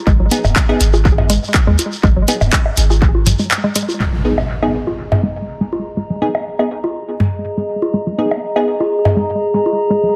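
A straight 4/4 groove at 122 BPM drives this hypnotic, sparse minimal techno cut in G# minor, where a punchy electronic kick and deep, pitch-dropping sub bass sit up front alongside house-kit handclaps and hi-hat, a grainy shekere, and echoing electronic toms, bongos and congas that carry on to 9.8 s after the kick and bass stop by 3.3 s. A warbling, nostalgic tape-like pad with a slow attack and dark, chorused sheen pumps against the sidechain, while a hollow, bouncy square pluck riff and crisp digital wavetable chord stabs repeat through analog delay over a single G#m chord. After a short break at 3.5 s, an electronic impact lands at 4.0 s to open the second section, all set in a light, echo-heavy digital ambience in this excerpt from a longer piece.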